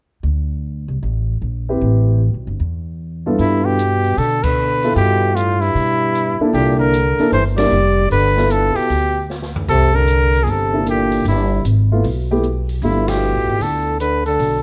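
Playful and relaxed, this clip of small-group swing and bop jazz moves at 152 BPM in 4/4 with a loose swing feel, centred on G mixolydian. A woody, growly pizzicato upright bass opens alone at 0.2 seconds, up front in the mix, and a dark concert grand piano with deep low notes enters at 1.7 seconds to comp through rich extended chords. At 3.4 seconds the warm trumpet takes the melody, its vibrato and scooped notes sitting prominently, while a breathy, mellow trombone carries a lower second line. The drum kit arrives at the same moment with a natural studio-room sound, a boomy kick and a medium-tuned snare, and it adds a short fill partway through. The band hits several accents together, and a light reverb gives the whole group a relaxed, roomy glow.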